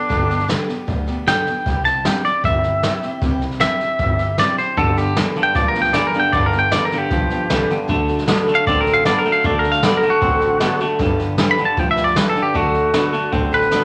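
Drenched in a large studio reverb, this upbeat, retro rockabilly cut at 154 BPM in G major sets a bright, clean, compressed twangy electric guitar solo up front over a fresh-stringed picked steel-string acoustic guitar with audible finger squeak, a woody, thumpy pizzicato upright bass on gut strings and a distant, roomy brush kit with a boomy kick, while a second picked electric guitar joins with a lower riff at 4.8 seconds.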